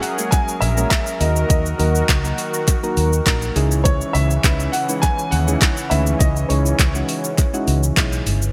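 Dance-pop at 102 BPM in C# dorian, this short excerpt from a longer piece feels bittersweet yet energetic, riding a straight 4/4 pulse over chords moving from F#add9 to D#m and on to C#madd9 at 3.6 seconds. Up front, a smooth R&B drum kit with a soft kick, dark hats, handclaps and shaker carries an overdriven, produced edge, while a vintage muted fingered electric bass enters at 0.6 seconds, round and punchy with a foam-muted, amped tone. A sawtooth analog pad, detuned and smooth with a soft attack, sustains chords through chorus and tremolo, and soft electric-piano-like synth keys add gentle, warbling accompaniment with a fast attack and decaying notes; both pad and keys pump against the sidechain, as does the bass. A dark, mellow baby grand piano sings the melody between C#5 and G#5 with subtle chorus and delay, ending at 7.6 seconds. Underneath, a very quiet group handclap adds a crisp, human touch from a small room, all framed by light digital reverb in a bright 1980s-style production.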